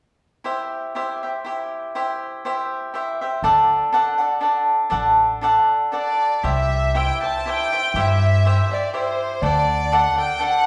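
A rubato 3/4 lilt at 121 BPM carries this proud, romantic mariachi excerpt in C major, opening at 0.4 s with a bright, crisply picked cavaquinho accompaniment that moves between C and D chords. A woody, thumpy pizzicato upright bass joins at 3.4 s, and at 5.9 s an intimate chamber violin section takes the melody with light vibrato and a soft, sul tasto tone. The close, up-front parts sit in a wet recital hall reverb that lends the small ensemble a church-like glow.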